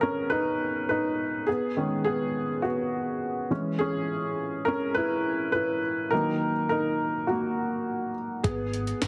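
A straight 4/4 pulse at 103 BPM carries this hopeful, uplifting piano-driven pop excerpt, cut from a longer piece. An upright piano, woody, worn and slightly detuned with a short sustain, plays alone up front from the start, moving through G#m, C#m and D#m before returning to G#m at 8.4 s. At that moment a jungle sampler-style drum kit arrives with hi-hat, a thumpy kick and a medium-tuned snare, its gritty, pitched-up, tape-warm sound pushed up front. A vintage muted electric bass enters alongside it on a low G#, dark, round and punchy with a foam-muted, amped tone. A moderate concert hall reverb lends space, while heavy radio-style compression keeps the whole mix dense and close.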